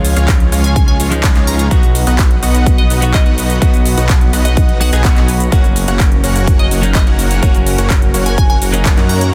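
A thick, menacing detuned saw bass, a lush background pad with chorus and phaser, a clean direct-recorded electric guitar with delay, and big-room drums with handclaps, metallic hi-hats and shaker open this anthemic, powerful festival progressive house excerpt at 126 BPM, moving from Db to B to Gb. A huge, airy supersaw riff enters at 0.2 seconds and a punchy, up-front electronic kick at 0.3 seconds, with sidechain pumping on the bass, pad, guitar and supersaw. A glassy, crystalline wavetable pluck carries the high melody from 0.6 seconds, all within a dense, heavily limited modern master and digital ambience.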